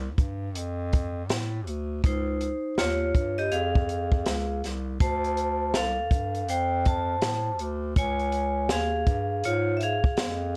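A ringing, metallic vibraphone, struck with medium hard mallets and played with the motor off, takes the lead from 2.0 seconds, its bright, close-miked tone sitting up front with a touch of plate reverb. Beneath it, a mellow bass clarinet carries the low line from the very start, its subtone voice soft in attack and shaded with light vibrato in a jazz style. An open, acoustic jazz drum kit enters at 0.2 seconds with hi-hat, a punchy kick and a medium-tuned snare, all heard up front in a small-room sound. The groove is a swung jazz-hop beat in 4/4, with a mellow, smoky mood. Chords move between Dm, Dbadd9 and Dm7 under a moderate studio reverb, in a short section cut from a longer piece.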